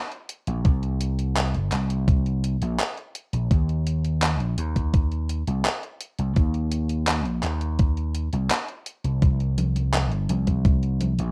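Vaporwave in C minor at 84 BPM, nostalgic and woozy, cut from a longer piece, where a gated 80s digital drum machine with congas, handclaps and hi-hat enters at 0.1 s under gated reverb, a punchy, amped vintage slap bass with tube saturation moves between G1 and Eb2 from 0.5 s, and a thumpy, tape-warm electronic kick drum sits up front from 0.7 s, all wrapped in light reverb and the rough, cassette-tape grain of a home demo mix.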